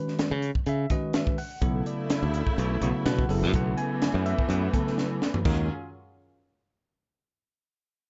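Electric jazz fusion with a driving, slick feel, heard in a short cut from a longer piece, moving in 4/4 with a light swing on the sixteenths. A bell-like tine electric piano carries the accompaniment from the start, its clean, direct tone treated with a phaser. A crisp fusion drum kit joins almost at once, with a high-tuned snare, tight kick, hi-hat, crash and toms sounding saturated and gritty in a pumping small room, and a fill arrives near 5.0 seconds. Underneath, a modern fingered electric bass sits up front with a growly edge. At 1.6 seconds a studio string section enters with rich, bowed sustained chords full of vibrato, as the harmony shifts from Db9sus4 through minor eleventh chords toward Ebm11. The overall production is dark and warm with a moderate club reverb.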